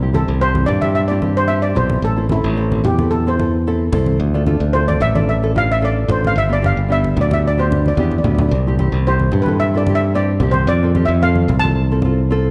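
A shimmering, metallic double-seconds steel pan carries the melody in this sunny, carefree calypso, struck with medium rubber sticks and sounding close, dry, full and up front as it solos across the whole cut. Beneath it, a bright, growly fingered electric bass sits direct and forward, while a small, fingerpicked nylon-string guitar adds warm acoustic accompaniment. Low-tuned, ringing congas played with soft hands stay close and dry in the background, and a short drum fill arrives at 7.8 seconds. The harmony moves through C, Am, Dm and G before returning to C and then F, all set in a moderate recital-hall reverb. The passage is cut from a longer piece.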